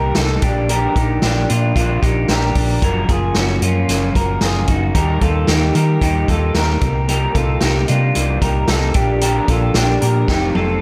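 Youthful and breezy, this excerpt of jangly indie pop moves at 113 BPM in a straight 4/4 in Bb major, with chords drifting from Bb6 through Gbmaj7, Eb and Cm7, back to Bb6 and on to F7. Two electric guitars through a small old amp carry it: one plays warm, slightly broken-up fingered arpeggios with analog chorus and delay, while the other picks a bright, twangy, lo-fi accompaniment up front with subtle chorus. A round, dark hollow-body bass and a vintage acoustic kit with a punchy kick and rolled-off top support them in a dreamy mix soaked in plate reverb, and the drums close with a fill at 10.3 seconds.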